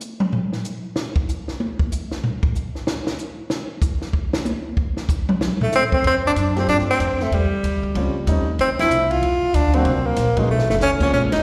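An easy swung 4/4 at 189 BPM opens on a dry, up-front cocktail drum kit soloing with dark cymbals, a high-tuned snare and a tight kick, before a breathy, close-miked tenor saxophone takes the melody at 5.6 seconds, joined by a woody, thumpy gut-string upright bass and a dark baby grand piano with audible action noise, all in a relaxed, swinging small-group jazz passage in F major. It is captured live through a club PA, with slapback echo on the drums, saxophone and piano and plate reverb on the saxophone and piano, and it has a band accent at 8.7 seconds and a brief drum fill near the end.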